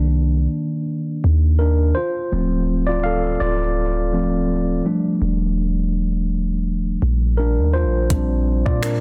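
Lightly swung 16ths at 83 BPM in 4/4 carry this tender, romantic contemporary R&B excerpt, where a mellow, clean tine electric piano takes a solo over Cm9, Dm7, Ebmaj9#11 and Bb69 chords; a deep, boomy 808-style bass with a dark sine body, a noise layer and a fast, decaying attack sits up front beneath it; and a small-room electronic drum kit of finger snaps, metallic hi-hat, soft kick and a softly clipped snare arrives only at 8.1 s, framed by digital ambience and a dense, heavily limited modern master.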